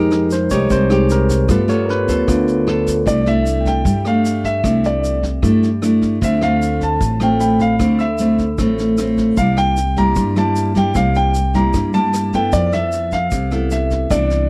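A barky, lightly overdriven tine electric piano opens this breezy, sophisticated bossa nova excerpt at 152 BPM with a solo over Fm9 and G9, before the warm concert grand piano enters at 3.1 s with an up-front melody touched by slapback echo as the harmony settles into C major, supported by fingerpicked nylon-string guitar with audible finger squeak, woody, growly pizzicato upright bass, warm brushed drums with a tight kick and rim clicks, and a soft, grainy, mellow tube shaker, all captured in a dry, close 1970s-style small studio room.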